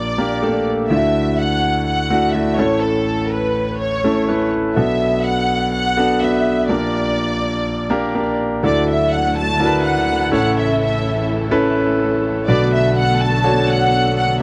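Warm and uplifting, this pop excerpt moves at 124 BPM in a straight 4/4 feel in D major. A lush, bowed violin section carries the melody up front, its smooth vibrato singing in a register from A4 to A5. Beside it, a clear concert grand piano provides the accompaniment with a deep bass and a vintage character, reaching from A1 to C#5. At 8.6 seconds a second string section enters in the background with sustained chords, adding expressive portamento and vibrato. The harmony cycles through Gm/Bb, Dadd9, A and Bm7, with light reverb on a dry, close studio sound in a 1970s style.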